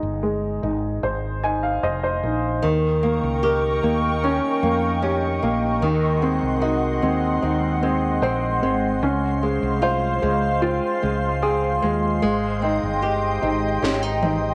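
This tender, emotional pop ballad moves at a slow 75 BPM in a straight 4/4 in Ab major, cut from a longer piece. A clear, woody upright piano sits up front with a brief fill early on, while a dark, round fretless electric bass gives a punchy, direct foundation beneath it. At 2.6 seconds a fingerpicked flamenco guitar enters with quiet acoustic arpeggios, its finger squeaks audible. At 2.9 seconds a glassy, ethereal FM pad enters with a slow attack and long release, thickened by ensemble chorus and its own reverb. The harmony moves from Abmaj7 through Eb7 and Ab7 to Dbmaj7 before returning to Abmaj7, all bathed in a moderate plate reverb. Just at the close, at 13.8 seconds, a layered electronic house drum kit comes in with an overdriven fill of cracking snare and toms that sounds re-recorded in a large room.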